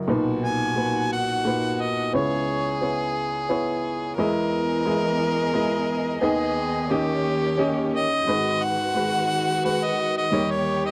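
A harmonica with light vibrato and a smooth top carries the melody up front in this reflective, melancholic acoustic folk-pop ballad in G# minor at 88 BPM in 3/4, stating a phrase at 0.4 s and returning at 7.9 s. A clear, woody upright piano with audible action noise accompanies throughout, while a rich, focused bowed violin adds a second line with slapback echo, and a studio string section brings in warm sustained chords from 4.2 s. Cut from a longer piece, it has a dry, close 1970s-style studio sound with light reverb, moving through Bmaj7, C#m7 and Emaj7 before settling on G#m7 and D#7.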